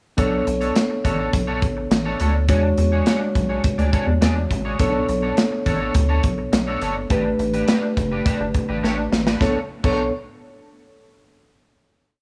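At 0.2 s the full band enters together on a Bm9 chord: a mellow tine electric piano holding drop-2 voiced chords up front, a rubbery square-wave bass, a modern acoustic drum kit and an electric guitar at the edge of break-up. This short early-eighties boogie funk piece moves at 104 BPM in straight 4/4 in B minor, with a late-night, funky mood. The bass plays a fat, syncopated boogie line with slides, its hollow, bouncy tone shaped by a resonant filter pluck and a moving notch. The kit lays down a mid-tempo boogie beat with a punchy kick, a medium-tuned snare, hi-hat and crash in a pumping studio room. The guitar adds choppy, picked sixteenth-note figures, twangy and slightly broken-up, treated with analog chorus and sitting lower in the mix than the piano. The harmony moves through Bm9, E13, Bm9 and A9sus4, and a drum fill at 8.8 s leads into a final Bm9 at 9.4 s, with the piece framed by a small studio room ambience.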